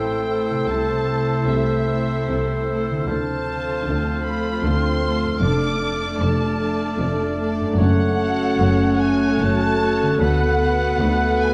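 A dark, reverberant recital-hall sound frames this serene, rubato slow movement in three, cut from a longer romantic orchestral piece. A rich, focused violin section sings the melody with vibrato over second lines from a clearer, intense violin section, an oboe, a soft, distant clarinet and a pure, hollow flute. Lush violas, mellow horns holding sustained chords and a very quiet, ringing harp playing arpeggios fill the middle, while bowed cellos and double basses anchor the bass as the harmony moves from Am through Dm7 to F#m and Bm7/D.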